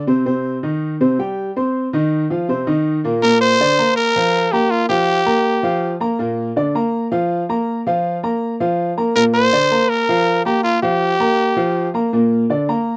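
This joyful, danceable Latin excerpt, cut from a longer piece, moves at a brisk 162 BPM in a straight 4/4 in B-flat major. A clear, somewhat boxy baby grand piano carries the accompaniment up front from 0.1 seconds, ranging from low bass notes to bright upper notes as the harmony moves between B-flat and suspended F chords. At 3.2 seconds a growling trumpet takes the solo melody, sitting just above the piano in the mix with a raspy, gritty, punchy tone and a light vibrato. It plays a pop-style line in a compact middle register, drops out, and returns at 9.2 seconds for a second brilliant phrase. The sound is that of a dry, close 1970s-style studio recording with light reverb, keeping both instruments present and immediate.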